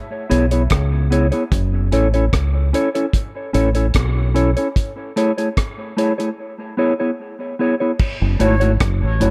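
At 0.3 s a mellow, clean electric guitar, a deep, round fingered bass and a dry, dark reggae drum kit enter together, setting a hypnotic, heavy dub reggae groove at 74 BPM in 4/4 with a straight feel, in F# minor. The guitar's fingered accompaniment carries a dub echo over a progression that moves through E6, a rootless F#m7, Amaj7, then E6 and F#m7 again. Beneath it, the punchy, amped bass sits lowest and loudest in the mix, while the kit's tight kick, hi-hat, rim click and crash cymbal keep a rolled-off, smooth top end. A break arrives at 4.8 s, and shortly after the music returns to F#m7, an airy concert flute with vibrato and a crisp attack sounds a single echoing note at 8.4 s, set far back behind the up-front rhythm parts. The echo-heavy mix has light reverb and a small-room ambience, and this excerpt is cut from a longer piece.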